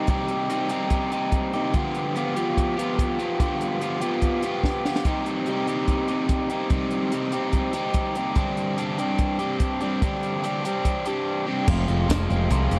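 Indie rock in C minor at 145 BPM, moody and restless, with a bright, double-tracked overdriven electric guitar riff up front from the start, moving through Cm, G5 and Gsus4 over a dry, punchy compact cocktail drum kit with dark cymbals, a high-tuned snare and tambourine, which plays a fill at 4.6 seconds. At 11.7 seconds the harmony shifts to Fm and a growling picked electric bass enters, overdriven and up front, for the closing moments of this short cut from a longer piece. The sound is close and dry, like a 1970s studio recording with little reverb.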